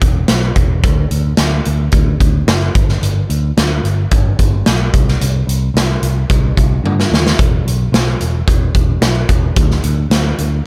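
Anthemic and cathartic, this short cut from a quiet-loud alternative rock piece moves in a straight 4/4 with a big rock drum kit and a picked electric bass playing throughout. The acoustic kit sits up front with a natural, big-room sound, a punchy kick and a medium-tuned snare, working across hi-hat and toms, with a fill at 6.8 seconds. Underneath, the amped bass stays low and warm in tone, and the mix carries little reverb.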